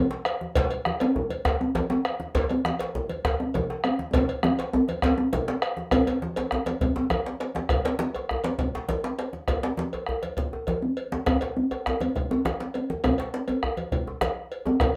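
Earthy and festive, this short West African drum ensemble passage in 12/8 sets ringing congas and two djembes, one tight, cracking and saturated and the other deep, vintage and band-limited up front under hard hands, against a round, up-front bombo and a metallic cowbell in a small, reverberant room, with a drum fill from 4.1 to 5.9 seconds leading into a new section.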